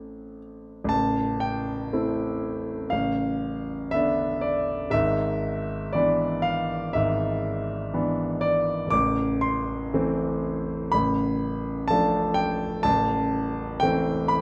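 A concert grand piano sits up front in a moderate recital hall, its tone clear and smooth with a deep bass and a vintage color, while a reverb of about 1.8 seconds gives it a natural sense of space. This is a romantic character piece for solo piano in A minor, cut from a longer work, with a bittersweet, passionate mood. The tempo hovers around 60 BPM in 4/4, but the beats are uneven and the playing leans on rubato, so the pulse breathes freely. The piano spans from A0 up to D6, and it is tuned slightly low, with A4 at 439 Hz. The harmony moves from A minor through Bm7b5 over A and E7 over G#, then returns to A minor at 8.9 seconds, touches Dm over A, and settles back on A minor at 12.9 seconds before the clip ends at 14.4 seconds.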